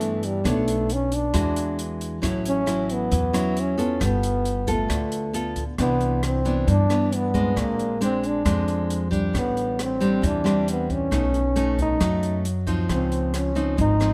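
A breathy, mellow trombone carries the melody up front from the start over fingerpicked, full-bodied nylon-string guitar, woody, thumpy pizzicato upright bass and an open jazz kit of hi-hat, rim click and boomy kick in this romantic, sunny bossa nova at 135 BPM, its chords moving from Bm9 through A6 before shifting at 5.8 seconds to a new passage that passes through Cmaj9 and Am11 to close on Dbmaj9, all in a close, detailed recording with light reverb, cut from a longer piece.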